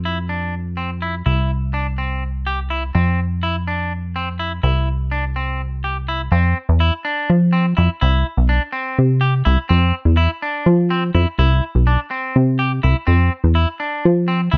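This progressive instrumental runs in an uneven 7/8 at 249 BPM counted in eighths, with a straight, driving feel and a bright mood. A plucky analog bass anchors it from the very start, its punchy, funky sawtooth and square-wave tone shaped by a filter pluck and a moving notch, with a fast attack that decays into a mellow body sitting up front. A clean electric guitar joins at 0.1 seconds with picked arpeggios, its bright, clean sound also placed up front. The harmony alternates between F5 and C in the opening stretch, then shifts at 6.3 seconds to trade F5 against Cmaj7 for the remainder. Light reverb gives the pair a touch of space, and the passage is cut from a longer piece, ending at 14.6 seconds.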